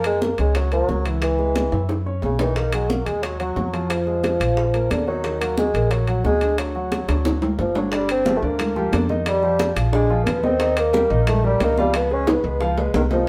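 A band playing live together in one large studio, with moderate reverb around them, gives this fiery, driving piece of Afro-Cuban jazz an open, natural sound. Up front, a mellow solo bassoon carries the melody in a classical style, its light vibrato sounding distant and roomy. Beside it, a woody, thumpy upright bass plucked on steel strings anchors the low end, while a grand piano comps with an intimate tone and audible action noise. Ringing, high-tuned congas and ringing metal-shell timbales, close and dry, drive the rhythm, and tight bongos played with soft hands sit in the background. Drum fills arrive around 1.7 s, 7.1 s and 12.3 s, and the harmony shifts into a new section at 7.9 s before the piece is cut off mid-performance.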